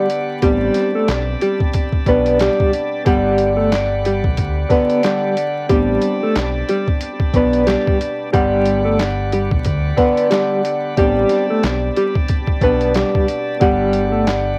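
Dry, crackling home-cassette sound frames this soulful boom-bap hip-hop excerpt, where a compressed, pitched-down sampler kit with thumpy kick, snare, hi-hat and handclaps swings up front beside a ringing, thumb-plucked Celtic harp, while a dark, clean electric guitar carries the melody through tremolo, a round dub bass enters underneath at 0.4 seconds, and a gritty, overdriven tonewheel organ holds thick, quiet chords through a slow rotary speaker over alternating Am11 and Gmaj7.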